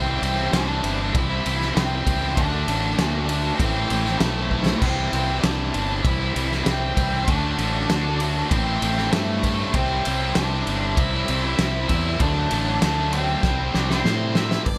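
A dark, fuzz-soaked lead guitar carries the melody through this bittersweet, anthemic stretch of quiet-loud alternative rock at 98 BPM in a straight 4/4, riding over a cranked stack guitar and an overdriven semi-hollow guitar that pick out bright, crunchy riffs from the background. A growly, fuzzed fingered electric bass sits up front from the start, punchy in its low register, and a loose indie drum kit joins at 0.2 seconds with a fat snare, a punchy kick and dark cymbals in a pumping studio room. The harmony circles through C, D and A minor in a C lydian colour, giving the riffs a lifted, open feel. Drum fills break in briefly around 4.5 seconds and again from 13.4 seconds as the progression resolves back to C. At the very end, a full-bodied, picked steel-string acoustic guitar appears for a moment at 14.7 seconds, all set in light reverb and a small room ambience in this excerpt cut from a longer piece.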